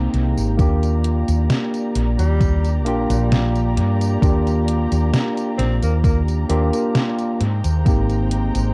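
Vaporwave with a faded, woozy mood, this short cut opens on an Abmaj9 chord before settling on Ebmaj7, as a bright, clean tine electric piano with subtle chorus and dub echo sits up front over a round, woody fretless bass and veiled, con sordino chamber strings holding soft-attack bowed chords. A detuned 8-bit drum machine comes in almost at once, its fat, overdriven snare, hi-hat and tambourine soaked in dub echo, and a thumpy, overdriven electronic kick joins at 0.6 seconds. From 2.2 to 6.2 seconds a jazz-style tenor saxophone floats a low solo with scooped notes and vibrato, roughened by 12-bit sampler grit and tape echo, all within an echo-heavy cassette mix and springy reverb.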